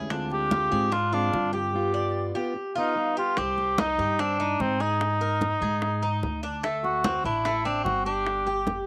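A snug booth ambience and the soft grain of a home cassette recording frame this short cut from a longer Cuban son and guajira piece, nostalgic and gently warm at a brisk 147 BPM in C minor. Up front, a mellow cor anglais carries the melody in a classical style with light vibrato, close-miked and touched by cassette tape and plate reverb. A bright, metallic Cuban tres with double strings spins arpeggios throughout, while a full-bodied fingerpicked jumbo steel-string acoustic guitar adds accompaniment only until 3.4 seconds. Underneath, a dark, woody upright bass played pizzicato on gut strings gives a thumpy foundation, and in the background sit round, low-tuned bongos struck with hard hands and ringing, high-tuned congas played with soft hands. The harmony moves from Dm7b5 and G7 into Cm, Absus2 and D7 before settling on G5 near the close.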